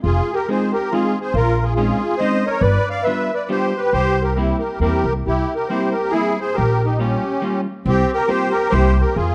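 A reedy, shimmering musette accordion carries the melody up front beside a woody, thumpy pizzicato upright bass in this nostalgic, charming musette waltz fragment, with a clean, picked hollow-body electric jazz guitar entering in accompaniment at 0.5 s, the trio moving with a loose rubato feel through changes such as Fm7, Bbm11, G7 and C7 in a dark production with light reverb.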